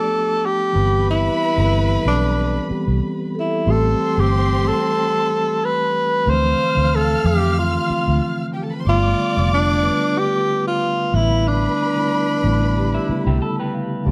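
A breathy tenor saxophone carries the melody with scooped notes and light vibrato over an expressive bowed violin section and a mellow tine electric piano, joined at 0.8 seconds by a round, punchy, foam-muted electric bass up front, in a silky, cinematic slice of lush 1970s-style soul at 92 BPM with a gentle swing. Soft-mallet vibraphone rings in the background with fast motor vibrato, briefly at 3.4 seconds and again from 9.8 seconds, while the chords move through rich ninths and sevenths. Near the close a slightly broken-up, lo-fi electric guitar adds a short riff as the electric piano plays a fill, all set in light reverb and small room ambience.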